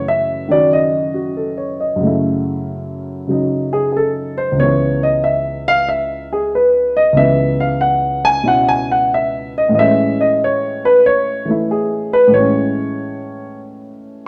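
Late-night and moody, this solo jazz excerpt in C# minor moves at 93 BPM in 4/4 with a swung eighth-note feel. A dark, mellow grand piano sits up front and plays alone for the full 14.3 seconds, ranging from C#2 to G#5 over chords moving from F#m7 to C#m7 at 4.6 seconds and Amaj7 at 9.7 seconds. Its natural tone is captured live in a wet stone room whose reverb lingers around the notes.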